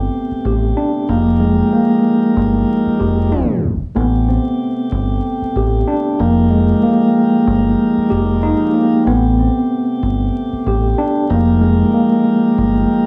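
A dry, gritty hardware sound with vinyl crackle and a touch of studio reverb frames this tough, mellow hip hop cut, taken from a longer piece and swinging its sixteenths in 4/4. Up front, a tine electric piano plays warm, clean accompaniment that comes through its built-in speakers, filtered at both ends. Beneath it, a dark, round tonewheel organ holds sustained chords, lightly overdriven with key click, a subtle chorus and a stationary speaker. A deep dub bass, fingered and amped with transformer saturation, sits direct and forward, stopping at 12.8 s. The harmony moves between Am11 and Fm11, and a tape stop from 3.3 to 4.0 s marks the turn into the second section, which runs to the end.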